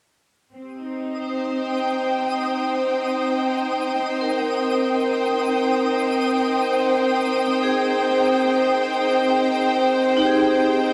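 Luminous ambient music in free time, this piece opens on a lush Abmaj7 as a rich string section holds smooth, bowed chords up front with light vibrato. A metallic vibraphone struck with hard mallets gradually fades in behind them with ringing arpeggios through analog delay, while a twinkling granular texture, sparkling with an octave-up shimmer, slowly fades out high in the background. Shimmer reverb and a wet spring reverb give this echo-heavy excerpt, cut from a longer piece, a floating, glowing space.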